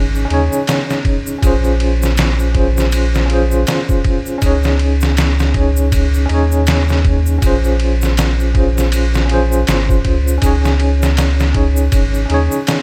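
A gritty, pitched-down sampler-style drum kit with a thumpy kick, medium-tuned snare and ride cymbal sits up front in this brooding, hypnotic trip hop excerpt at 80 BPM in Bb minor with a light 16th-note swing, alongside a worn, slightly out-of-tune tine electric piano with tremolo and tape echo moving between Dbsus2 and Bbm7, a deep, round sine sub bass with tube saturation, and a ringing egg shaker played with soft hands in the background, set in a dry mix with little reverb.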